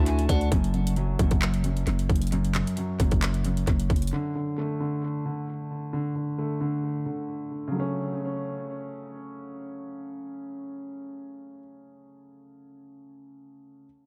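Menacing and dark, this trap-flavored hip hop fragment is cut from a longer piece and moves at 133 BPM in a half-time 4/4 feel, centered on F# minor. It opens on a D chord with a brief, crowded moment: a clean, picked electric guitar sits in the background with phaser and tape echo, a pure, warm silver concert flute with vibrato floats above it, and a very quiet, vintage-sounding woodwind section holds sustained chords, all falling away by 0.5 s. A growling, buzzy 808-style bass with a fast attack and decaying tail sits up front beside an electronic trap kit of hard-clipped kick, metallic hi-hats and handclaps touched with tape echo, and both drop out at 4.1 s. The dark, mellow concert grand piano with its deep bass and natural tone carries the accompaniment throughout, its tape echo trailing through a heavily reverberant studio space as the harmony passes through D5 and settles on F# minor. 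The result feels shadowy and spacious, leaning on the piano once the low end and beat vanish.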